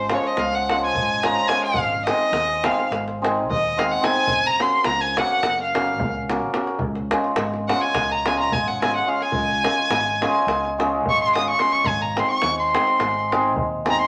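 A rich, smooth violin with vibrato leads this festive, exuberant stretch of Balkan wedding-band folk, carrying a bowed solo up front while a mellow, shimmering hammered dulcimer rings out its accompaniment close beside it. Underneath, a growly, punchy fingered electric bass and a tight, vintage-sounding davul drive the straight 9/8 lilt. The chords move from Db through Ab and Gb back to Db, then on to Ab, and a wet studio reverb gives the cut from a longer piece a lively glow.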